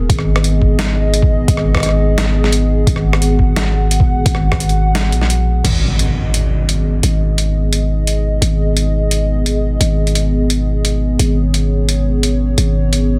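A half-time groove at 173 BPM in G# minor drives this dark, spacious drum and bass excerpt, where a growling, buzzy 808-style bass with tube saturation sits up front beneath a deep, detuned analog pad with chorus and sidechain pumping, gritty pitched-down sampler drums with a medium-tuned snare, a thumpy background kick that plays until 4.6 seconds, and an electronic impact at 5.6 seconds, all in a dense, heavily limited mix.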